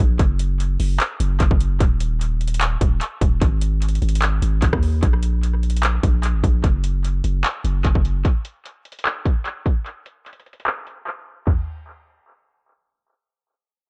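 Hard-hitting and menacing, this half-time hip hop cut sets a deep, sine-toned 808-style bass with a fast attack and long, decaying sustain up front until 8.2 seconds. An electronic trap kit of hard-clipped kick, metallic hi-hats, handclaps, rim clicks, toms and crash cymbal carries vintage 12-bit sampler grit and tape echo, running until 11.6 seconds. The dry, echo-heavy, low-pass-filtered mix brings a filter sweep from 5.0 seconds and a brief break just before the closing section.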